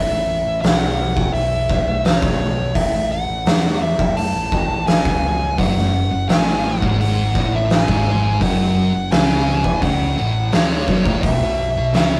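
An oversized, low-tuned drum kit sits up front from 0.6 s, its fat snare, punchy kick and hi-hat sounding gritty and saturated, with a rolled-off top and a bright stone-room character, in this heavy, brooding stoner and doom metal excerpt at 85 BPM in 4/4. A dark, compressed fuzz lead guitar carries the melody over a round, growling overdriven bass, and at 5.6 s a pair of thick fuzz guitars joins in the background with a distorted riff as the chords move from A5 to F#5 and then B5. The rough rehearsal-room recording has light reverb and warm saturation, and the clip is cut from a longer piece.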